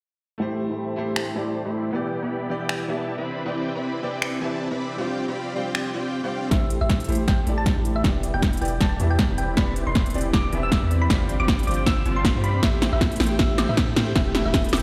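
A half-time future bass groove at 157 BPM with swung sixteenths carries this lush, bittersweet A minor piece, in which a bright, worn grand piano with a short sustain, sidechain pumping, low-pass filtering and delay plays beneath a huge, detuned, compressed supersaw riff whose filter sweeps, over chords moving through Am7, Cmaj9 and G7sus4. From 1.2 seconds an overdriven, up-front dance kit of finger snaps, crisp hi-hat, punchy snare and woodblock drives the beat, and at 6.5 seconds a build-up begins with a drum fill, a punchy overdriven electronic kick, a deep sine 808 bass, and a tine-like, mellow thumb-piano-style pluck melody with chorus, delay and pumping. A very quiet, dark, soft pluck adds arpeggios from 12.7 seconds as the harmony returns to Am7 before moving to Em, with the whole mix ringing in a stone-walled room as if played over a big sound system.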